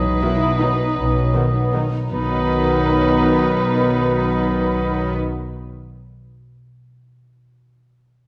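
This elegant, sweeping classical fragment in B major and 3/4 opens at once with a rich violin section singing the melody with light vibrato, joined by clear clarinet, hollow flute and oboe on second lines, ringing thumb-plucked harp arpeggios, bowed double basses and cellos, and very quiet timpani on medium mallets, while a dark second violin line, warm violas, a smooth French horn section and distant trombones filling sustained chords enter at 0.2 s, the rubato pulse of 149-173 BPM slowing through the opening 2.1 s and the harp ringing on to 6.0 s, the whole recording bathed in scoring-stage reverb and the warbly pitch drift of worn cassette tape.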